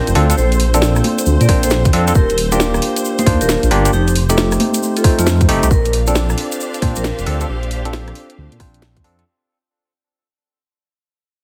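A bouncy, soulful two-step UK garage excerpt at 135 BPM in Bb major with a swung 16th feel moves through Bbmaj9, Ebmaj7 and F7 chords. It opens on a ringing vibraphone melody with tape echo, silky string-machine chords pumping softly in the background, and bell-like tine electric piano stabs roughened by 12-bit sampler grit. A deep, rumbling detuned saw bass, a garage kit of congas, hi-hat, rim click and cracking snare, and a grainy egg shaker join at once. A tight, layered electronic kick arrives at 1.5 s, and intense bowed studio strings enter at 5.7 s as the heavily compressed, radio-like mix returns to Bbmaj9 and begins to fade.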